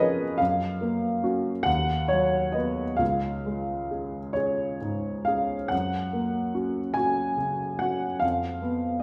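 A lone upright piano opens this brief cut from a longer classical piece, a romantic nocturne heard in an unhurried, flowing 12/8 with free rubato. The instrument sits up front and sounds woody and intimate, slightly detuned, with the soft clatter of its action audible beneath the notes. Its range reaches from deep bass tones up into the upper middle of the keyboard, and a wet recital-hall reverb lends the sound a gentle, natural bloom. The harmony moves through a simple, tender progression, settling back on the home chord at 5.7 seconds before leaning into an unresolved dominant near 8.2 seconds. The mood is nostalgic and serene, and the fragment ends at 9.0 seconds as if in mid-thought.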